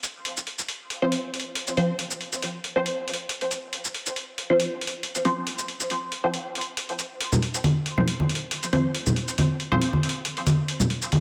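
Deep dubstep at 138 BPM in 4/4, with a half-time feel and a 55% swing on the sixteenths, sets a dark, meditative mood in this short excerpt. A gritty, pitched-down electronic hi-hat and shaker sits up front from the start, compressed and sampler-like with a tape-warm character, and runs the full 11.2 seconds. At 1.0 seconds a filtered dub chord stab enters, a muted, resonant sawtooth-and-pulse sound with detuned and wave-folded edges, a sine underpinning, and a fast-attack filter pluck with short decay, moving between F3 and C5 through phaser, lush chorus and dub echo until 9.9 seconds. Bright acoustic congas join at 7.3 seconds, played with soft hands, compressed and saturated, and thrown into dub echo of their own. The harmony rests on F5, and the whole sits in a moderate, lush digital hall with a 1.9-second decay.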